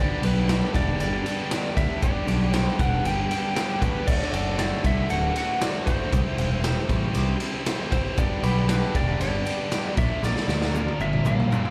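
A raw garage drum kit sits up front, its punchy kick, medium-tuned snare, toms, crash and ride saturated and gritty in a bright stone room with a pumping feel, closing on a fill from 10.2 seconds. Beside it, a growling picked electric bass, amped and overdriven, lands just as forward and bright across the low end. Over them, a lightly driven lead guitar carries the melody with a compressed, twangy, slightly broken-up tone and a slapback echo. Behind, a biting overdriven guitar and a second, mellower overdriven guitar play riffs with the same slapback, while a tight, double-tracked distorted guitar and a grainy tube shaker sit very quietly underneath. This sunny, swaggering classic rock excerpt moves through G, D, C, G and a closing Bb with a straight 4/4 feel, heard as a live gig through the venue's PA with club reverb.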